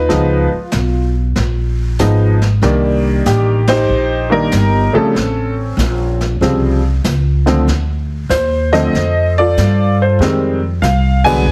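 A clear, slightly detuned upright piano carries the melody up front in this smoky, moody jazz piano trio excerpt, its worn, woody tone ranging from C#3 to Ab5. The acoustic upright bass sits close beside it, played pizzicato with a warm steel-string sound, while a brushed jazz kit with dark cymbals, a medium-tuned snare and a boomy kick sits further back in a small, natural-sounding room. The trio swings at 95 BPM in 4/4, tuned to A4 = 442 Hz, moving through C#9, Cm9, Aaug, Dm7 and Fm9 chords. The whole band hits accents at 3.6 and 11.1 seconds, the second landing as the fragment cuts off from a longer piece. Light reverb and heavy multiband compression give the mix a dense, radio-like sheen.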